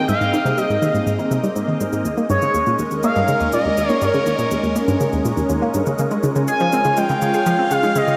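An expressive portamento lead with a smooth, vibrato-tinged sawtooth and triangle tone carries the melody up front, bathed in chorus, phaser, shimmer reverb and tape echo, in this cosmic, luminous fragment of ambient, sequencer-driven space music at 122 BPM in 4/4. Beneath it, a swirling, detuned analog pad holds sustained chords through Ab, Eb7sus4 and Db, while a round, fast-attack analog pluck riff with ring modulation, chorus, tape echo and a filter sweep drives the pulse. Dry, overdriven cabasa and bongos sit low in the mix from 0.1 s, and a plate reverb gives the whole piece a dreamy, soaked atmosphere.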